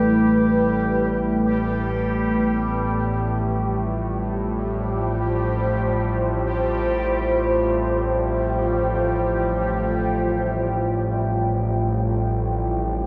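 A deep, moody synth pad sits up front in this ominous dark ambient drone, holding sustained chords built from detuned sawtooth unison layered with sine and triangle tones and a sub octave, each note arriving on a slow attack and lingering through a long release. Beneath it, an analog drone fades in across the full 13.1 seconds, its nasal sawtooth and pulse-wave tone evolving under pulse-width modulation and chorus. Alongside, a brilliant, bubbling texture of resonant, detuned sawtooth sound shifts through random filter steps, adding restless motion to the otherwise suspended, free-time atmosphere. The harmony moves from A5 to F at 2.7 seconds, deepening the sense of unease. Everything is bathed in a cathedral-like reverb with a 5.0-second decay, giving this warm, shadowy excerpt from a longer piece a vast, cavernous presence.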